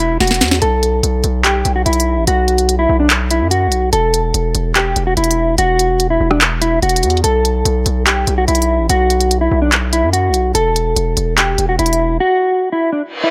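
Dark and hard-hitting, this short trap excerpt cut from a longer hip hop piece moves at 145 BPM in a half-time feel. A mellow, clean electric guitar carries the melody between D4 and A4, its fingered tone shaded by analog chorus and a low-pass filter that keeps it dusky. Underneath, a distorted 808-style bass rumbles from E1 to F#2, heavy and saturated with a fast attack, a decaying tail and a noisy edge, until it drops out at 12.2 seconds. The electronic trap kit sits up front with a sharp snare, crisp hi-hats, handclaps and rim clicks, opening with a quick drum fill at 0.2 seconds. The harmony circles between Esus2, B5 and Esus4, and a brief reverse cymbal rises in at 13.1 seconds as the guitar rings on beside it in a dry, close mix.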